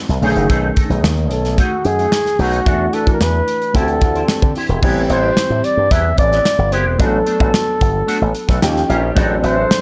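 Urban and nocturnal, this polished 1980s jazz-funk pop piece moves at a straight 111 BPM in 4/4. A punchy slap bass with an envelope filter and an airy studio drum kit with tight kick, snare, hi-hat and crash sit up front, while a natural-toned grand piano comps and a twangy, clean electric guitar with an envelope filter plays a picked riff, both touched with ensemble chorus. A mellow, breathy flugelhorn enters at 1.3 seconds with light vibrato and scooped jazz phrasing over chords running from B13 through Cmaj7/A at 4.8 seconds and D#9 to D7/A, all in a dark, lightly reverberant studio mix.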